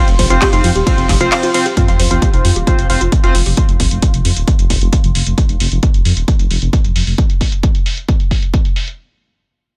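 The sound is dry and close, with a tape-warm, heavy electronic kick up front. Beside it, a layered techno kit of handclaps, metallic hi-hats and ride cymbal, re-recorded in a small room, has its hats and cymbals low-passed and pumping with the sidechain. This is driving peak-time techno at 133 BPM in straight 4/4, industrial and hypnotic in mood, and cut from a longer piece. A woody, wave-folded pluck riff with lush chorus and tape echo sits in the background beside edgy stabs from a sync-sweep polysynth with a nasal sweep, and both end by about 3.6 seconds. Underneath, a dark, detuned saw bass rumbles and beats as it pumps, while an airy, breathy pad with a slow attack and long release fades out after the opening drop. At 1.8 seconds a very quiet electronic sub drop marks an impact as the music moves into its second section, and the drum kit carries on until 9.0 seconds.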